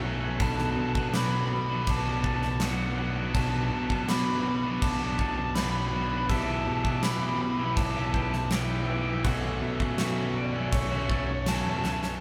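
Drenched in wet studio reverb and captured as a band playing live in one room, this brooding, cinematic post-rock passage in B minor moves at 81 BPM, with an overdriven cranked stack guitar and a thick fuzz guitar driving the riff over a punchy fuzz-picked electric bass, while a dark, slightly broken-up electric guitar through a small old amp carries the melody from 0.4 s, a huge arena drum kit with a fat snare and bright cymbals sits up front and ends on a fill at 11.8 s, and a twangy pedal steel guitar and a bell-like glockenspiel played with rubber mallets shimmer in the background across chords of Bm7, Em7/B and F#m/B.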